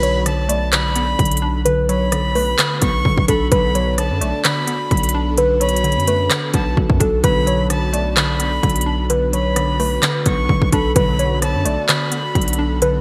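A menacing, hard-hitting half-time trap groove opens at once, with a trap kit of hard-clipped kick, crisp hi-hats, handclaps and rim clicks under gated reverb, a heavy distorted 808-style bass, and muted, dark felt-like synth keys carrying the melody through chorus and delay, while a breathy jazz flute with vibrato traces a bright second line up high, a hollow, bouncy square-wave pluck and an airy pad fill out the Bm7 harmony, and fat analog synth brass stabs punctuate the groove from the background, all set in a lush hall reverb with bright 1980s-style digital sheen.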